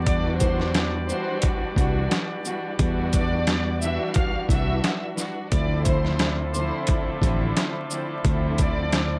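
Light reverb and a layer of vinyl crackle give this short, moody boom-bap hip-hop cut a gritty, aged surface. A compressed, pitched-down sampler-style drum kit sits up front with a thumpy kick, a medium-tuned snare, hi-hat and shaker, swinging in 4/4, while a round, dark fingered electric bass holds the low end. A warm studio string section plays bowed accompaniment through a cassette-tape coloring, and a lush, expressive violin section carries the melody with soft-attack vibrato from 0.1 seconds. A tight, vintage horn section adds clear stabs touched by tape echo, and a deep, detuned analog pad with chorus sustains chords very quietly beneath. The harmony moves from Em9 to Dm9 at 5.5 seconds before the excerpt ends at 9.2 seconds.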